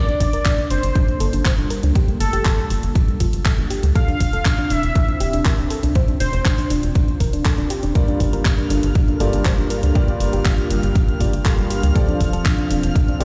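Progressive house at 120 BPM in G minor, driving and dreamy, with a punchy, up-front electronic kick and a tight, saturated sawtooth sequencer bass pumping under a house kit of handclaps and hi-hat, while a soft, round pluck arpeggiates through chorus and digital delay over a lush, detuned pad moving between Gm7 and Dm7/F. A thick, bold unison lead carries the melody with vibrato until 6.7 seconds, and from 8.0 seconds dark, boxy grand piano stabs arrive, joined at 8.3 seconds by a twinkling granular shimmer glinting in the background. An analog synth pad filter sweep runs throughout this cut from a longer piece, all set in a stone-room ambience, as if played on a big sound system in a bare space.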